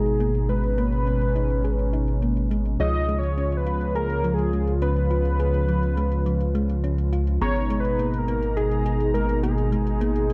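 A dark production with light reverb frames this driving, moody synthwave excerpt at 104 BPM in G# dorian, moving from G#madd9 to C# at 2.8 seconds and back at 7.4 seconds. A thick, detuned sawtooth unison lead with vibrato and tape echo carries the melody up front over a glossy, chorused pulse-wave bass, while a smooth, warbling analog pad holds sustained chords under a filter sweep. In the background, a tine-like thumb-piano-style pluck plays filter-swept arpeggios with chorus and echo, a very quiet, round FM electric piano adds stabs, and a metallic, low-passed electronic hi-hat enters at 0.1 seconds.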